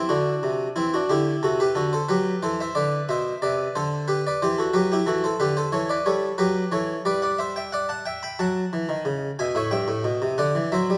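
A solo harpsichord in the Flemish style carries this baroque-style suite movement, its single set of strings giving a plucked, round tone that sits up front in the sound. The mood is grave yet flowing, moving at 90 BPM in 4/4 with a rubato feel that lets the pulse breathe. Spanning G2 to B5, the harpsichord moves through a harmonic path from C and D7 toward G/B and a rich D13 before settling into E minor from 7.1 seconds, where a D# diminished colour leads back to Em/G near 9.7 seconds. A moderate recital hall reverb, with a decay of 1.7 seconds, surrounds the instrument with a gentle sense of space. The passage is cut from a longer piece and lasts about 11 seconds.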